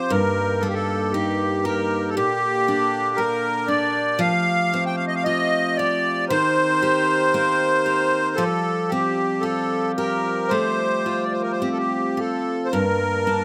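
Played rubato at a slow 53-60 BPM in 4/4, this mournful, longing Celtic slow air, cut from a longer piece, is carried throughout by a reedy, sweet accordion melody with light tremolo tuning, close-miked, dry and up front. A bright picked steel-string acoustic guitar supplies accompaniment beneath it, while a mellow woodwind section with a soft attack holds distant sustained chords in the background. Recorded outdoors with light reverb, the harmony drifts from Eb/G through Bb6, Fadd9 and Cm7/Eb before settling on Gmadd9 at 12.7 seconds.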